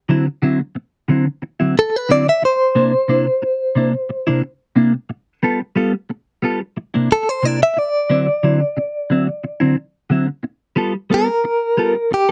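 Dry and close, this short cut from a longer blues piece has the intimate sound of a 1970s studio session, touched by light reverb. The mood is rollicking and swaggering, set in a straight 4/4. A warm, picked electric guitar with phaser plays compressed, up-front chord stabs from 0.1 s, moving through D9, C9 and G9. At 1.8 s a bright, direct-recorded guitar with tremolo enters to carry the melody, sitting high and forward in the mix. The two guitars play together until the cut ends at 12.3 s.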